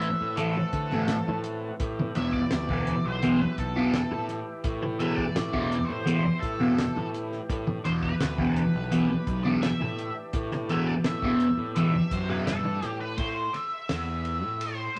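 A double-tracked, up-front fuzz guitar riff with phaser opens this trippy, mysterious psychedelic rock at 84 BPM, alongside a dark octave-fuzz lead guitar melody with wah, a gritty overdriven tonewheel organ holding sustained chords through a slow rotary speaker in the background, and a damped 70s drum kit with a fat snare and tight kick, while a punchy overdriven fuzz bass joins at 0.2 seconds. The riff guitar drops out at 12.7 seconds, and the organ follows at 13.2 seconds as the Am to Em harmony returns to Am, leaving lead, drums and bass in a wet studio reverb.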